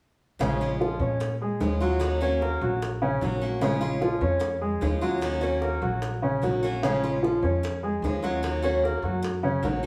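A straight 4/4 pulse at 150 BPM drives this danceable Cuban son and guajira piece in Bb minor, tuned to A4 = 435 Hz and cut from a longer performance, where a woody, thumpy pizzicato upright bass on gut strings, a bright picked steel-string acoustic guitar and a warm grand piano playing arpeggios sit up front while tight, high-tuned bongos played with soft hands stay in the background, the four parts playing together from 0.4 to 9.9 s over alternating Bbm7 and Ebm7 chords in the moderate reverb of a small stone room.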